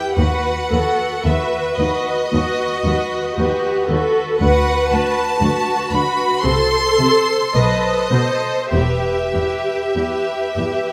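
Classical music for string orchestra, this slow romantic movement is cut from a longer piece and moves at 48-60 BPM in 4/4 with a rubato feel, its mood melancholic and yearning. A rich violin section carries the melody up front, high and bowed with smooth vibrato, while a second violin section shapes an inner line beneath it. A clear viola section sits more distant, filling in the accompaniment with even, bowed tone. From 0.2 seconds a warm cello section, also up front, and a focused, lush double bass section anchor the bass, the basses falling away at 9.3 seconds. The harmony drifts from B over D# through B minor and A minor to a tense B7b9 before settling on E minor at 8.7 seconds, all within a wet recital hall reverb.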